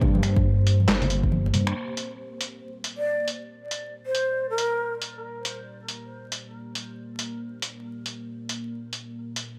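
A moderate spring reverb and a layer of vinyl crackle set a heavy, brooding atmosphere for this deep dubstep excerpt in G minor, moving at 138 BPM with a half-time, swung feel over a sustained G minor chord. A deep, moody ambient pad of detuned sawtooth and sine voices with a sub octave holds long chords throughout, its slow attack dressed in chorus and built-in reverb, and a filter sweep works on it from 1.8 seconds. In the opening moments only, a rumbling, saturated detuned saw bass sits up front beside a punchy, layered electronic kick and thick-skinned congas tucked in the background, with a band accent landing at 1.6 seconds. A trip hop sampler-style kit carries on with finger snaps, handclaps, hi-hat and a medium-tuned snare, its sound compressed, pitched down, muffled and tape-warm, as if re-recorded in a small room. At 3.0 seconds a breathy, close-miked bamboo shakuhachi enters up front with a soft attack and vibrato, trailed by dub echo.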